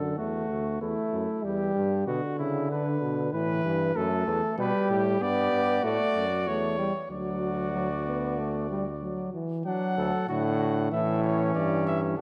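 In a straight, steady 4/4, this stately, elegant classical canzona for brass opens with a mellow trumpet on the second line, a warm trombone with vibrato carrying the accompaniment, and a clear, soft-attacked bass trombone anchoring the bass, all placed up front. At 4.6 s a second trumpet enters with the melody, its tone mellow and gently attacked above the light vibrato of the other trumpet. The parts sit in a moderate scoring-stage reverb with a dark production, in a passage cut from a longer piece.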